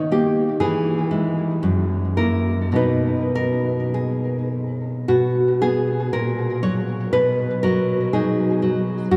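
Soaked in a dreamy cathedral reverb, this brief, tender excerpt of a romantic solo classical guitar piece features a deep, up-front nylon-string guitar, fingerpicked with tape echo and played with a rubato feel in 2/4, moving from an opening section into a second section at 5.1 seconds that runs until 9.2 seconds.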